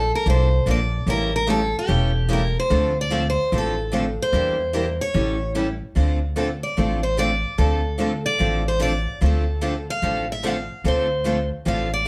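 A picked steel-string guitar carries the melody from the very start, bright and up front with fresh strings and audible finger squeak, over a pizzicato upright bass whose gut strings give a dark, woody, thumpy pulse. This is acoustic string swing in the jazz manouche manner, with a swung feel and a virtuosic yet bittersweet mood, cut from a longer piece. Two more picked guitars join in accompaniment at 0.3 s: one with a concert-guitar ring and its own finger squeak, the other a boxy parlour instrument sitting lower in the mix. The harmony moves through Bbmaj7, A7, Dm7 and Em7b5 before landing on Dm7, where a guitar solo takes over at 6.0 s for the second section. A wet studio reverb places the ensemble a little further back in the room, with the lead guitar and bass nearest the listener.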